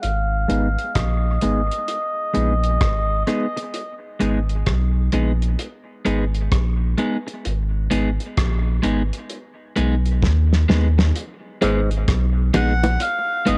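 This fragment of a longer piece carries the light reverb and studio ambience of a home cassette recording, with a deep, meditative dub reggae mood and a lazy swung sixteenth-note feel. A round, sine-like sub bass sits up front through the whole passage, beside a cloth-damped, thuddy acoustic kit of kick, snare, hi-hat and rim click with a fat snare, tight kick and rolled-off top. A reedy, breathy, nasal melodica with a plastic-case tone opens the melody through a low-pass filter, tape coloring and dub echo; a compressed, picked electric guitar at the edge of break-up joins at 0.5 seconds with filtered, echoing accompaniment. A filter sweep runs through the opening section, and a drum fill leads into the next. At 11.6 seconds an overdriven clav flicks a brief bright, twangy, auto-wahed riff, while low-tuned bongos enter in the background with dub echo, and the melodica returns at 12.6 seconds.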